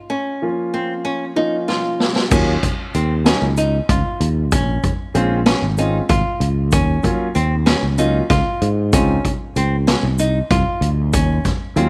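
A fingerpicked flamenco guitar opens this tense, intricate progressive instrumental, its bright arpeggios sitting up front. A concert grand piano joins almost at once with natural, deep-bottomed accompaniment, and the music moves in an uneven 7/8 with a straight feel. A drum fill at 1.7 seconds brings in a street-band kit recorded in a small room, with a boomy kick, medium-tuned snare, hi-hat, crash and dark cymbals. At 2.3 seconds a growly, sustaining fretless electric bass arrives up front, direct and amped, alongside a grainy, compressed tube shaker tucked in the background. The harmony circles through Bbm, Ebm7, Bbm7 and Ebm7 again, moves to Dbmaj7, and settles back on Ebm7. Studio reverb surrounds the ensemble in this passage, cut from a longer piece.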